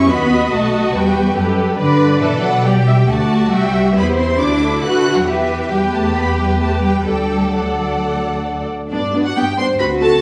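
A rich violin section carries the melody above a warm second violin line, a smooth-topped viola accompaniment, a focused, close cello section and a dark, up-front double bass with soft attacks and portamento, all bowed with vibrato in a lively, spirited classical-period movement for string orchestra that moves with flexible rubato inside a wet recital-hall reverb, cut from a longer piece.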